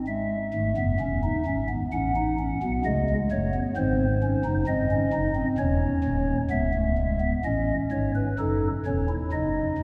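Classical baroque-style three-part fugue, serious and contemplative, played solo on a pipe organ's soft, hollow stopped flute with audible chiff and a tremulant, spanning deep bass to upper register, sitting up front in a long, wet church reverb, and shifting to a new section at 7.4 s before this brief fragment of a longer piece breaks off.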